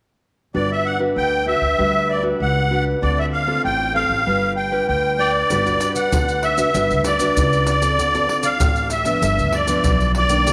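Festive and playful, this short cut from a longer samba and choro piece moves at 97 BPM in a straight 4/4 in G major, tuned slightly below standard pitch. A reedy, shimmering musette accordion sits up front with the melody between D5 and G5, its wet, airy tuning doubled by a slapback echo. Beneath it, a dark, fingerpicked classical nylon-string guitar supplies the accompaniment while a woody pizzicato upright bass on steel strings anchors the low end, all three playing from 0.5 seconds onward. At 5.5 seconds the percussion arrives, with maracas, pandeiro and a tight surdo heard in a small-room sound. The harmony moves from Gmaj7 through Dm7 to G7 and then repeats the same path, and a moderate plate reverb with a long tail surrounds the performance.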